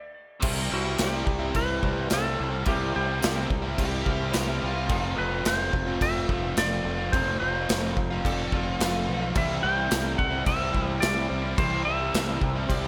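A straight 4/4 pulse at 108 BPM drives this sunny, swaggering classic rock passage, cut from a longer piece. A twangy clean lap steel carries the slide melody through digital delay, playing alone for the opening 0.4 seconds before the band crashes in over C and F. Up front, a big rock kit with punchy kick and bright cymbals plays alongside a growling overdriven fingered bass. Two double-tracked riff guitars sit alongside, one biting and overdriven, the other raw and garage-toned further back, both with slapback echo, while a barky, reedy electric piano and a jingly tambourine sit very low. A dark octave-fuzz lead adds a second line in the background from 3.8 seconds, a full-bodied jumbo acoustic with finger squeak slips in quietly at 9.3 seconds, and stage reverb lends the whole a big arena sound.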